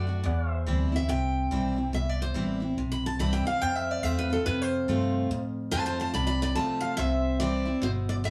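Nostalgic and down-home, this short honky-tonk and classic country cut swings along in 4/4 as a bright, up-front picked dreadnought acoustic guitar takes a solo melody with fresh strings and audible finger squeak over a second full-bodied acoustic guitar's accompaniment, a dark, round, foam-muted vintage electric bass, and a clean, compressed pedal steel guitar sitting in the background with fingerpicked slide chords and volume swells, all captured as a band playing live in a small room with moderate reverb as the harmony moves from C to F and back to C at 7.0 seconds.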